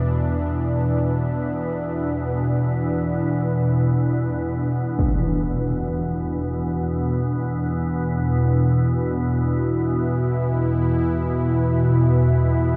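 From the first moment, a calm, wave-folded organ-like drone spanning E2 to B2 and an airy, detuned sawtooth pad holding resonant, chorused chords from B2 to E4 sit up front in a cavernous, dark reverb, while a barely audible metallic bowl rings meditatively until 5.0 s, when a huge, muffled impact lands in this ominous, free-time dark ambient drone piece that carries on to 12.8 s.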